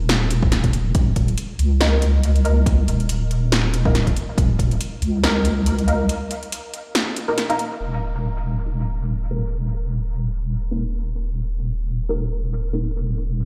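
A swung, half-time 140 BPM groove in 4/4 drives this dark, brooding deep dubstep cut. An overdriven electronic kick thuds until 4.7 seconds beneath an overdriven kit of punchy snare, metallic hats and crash cymbal, dulled by low-pass filtering, until the kit drops out at 7.9 seconds. A deep, up-front wobble bass of triangle and sine tones with chorus holds the floor throughout, and a muted, detuned sawtooth chord stab with phaser, ensemble chorus and dub echo enters at 1.8 seconds and undergoes a filter sweep from 7.8 seconds, the whole mix heard through a big sound system in a bare stone room.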